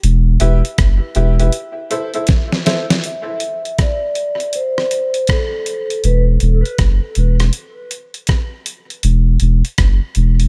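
A meditative, spacious dub reggae excerpt at 80 BPM in 4/4, with a swung sixteenth-note feel in E minor. A dusty, sampler-style drum kit runs throughout, its hi-hat, rim click, thumpy kick and fat snare sounding compressed and gritty up front, with a drum fill from 2.3 to 3.0 seconds. A soft, round sub bass sits deep beneath it, sustained with a fast attack, present at the opening and returning from 6.0 seconds. A clear, woody upright piano, worn and slightly detuned, drops echoing stabs over Em and Am chords early on, before a ringing, metallic vibraphone played with medium mallets takes the melody from 3.1 seconds through tape echo and a filter sweep. The echo-heavy mix carries a small room ambience, with later passages moving between Esus2 and open, chordless stretches.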